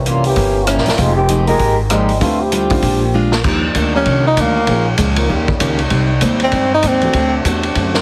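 A joyful, swinging big band jazz excerpt at 195 BPM opens with a cup-muted trombone section, veiled and mellow, carrying the line over woody pizzicato upright bass, dark-cymbaled vintage drums, picked steel-string acoustic guitar and, from 1.5 seconds, an intimate grand piano with audible action noise. A drum fill leads to 3.4 seconds, where the music settles into Eb major and a clear trombone section takes up sustained background chords. At 4.0 seconds a breathy, up-front tenor saxophone enters with subtone, vibrato and scooped notes, all under light reverb and a heavily compressed radio sound.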